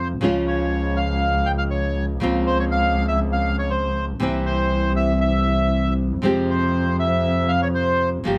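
A rubato 4/4 pulse at 120 BPM carries this melancholic, passionate tango in F harmonic minor, where a reedy, vintage-toned bandoneon sings the melody up front over fingerpicked classical nylon-string guitar with audible finger squeak and a single bowed double bass, clear and focused with vibrato, moving through Db, Bbmadd9/Db, C7 and Fmadd9 in a dark production with light reverb, the brief passage cut from a longer piece.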